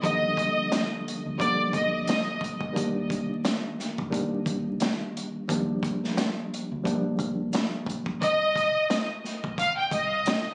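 A swung boom-bap beat drives this moody, tough hip-hop fragment, with a crunchy, gritty breakbeat kit up front and a deep, round dub bass sitting low in the background. A worn, slightly out-of-tune electric piano, lightly overdriven through built-in speakers and tinged by cassette tape, carries the chords until 8.2 seconds, when a lush, bright violin section with vibrato and tape echo returns after briefly opening the clip. The whole thing sounds captured on a phone in a small club room, dusted with vinyl crackle and a muted high end.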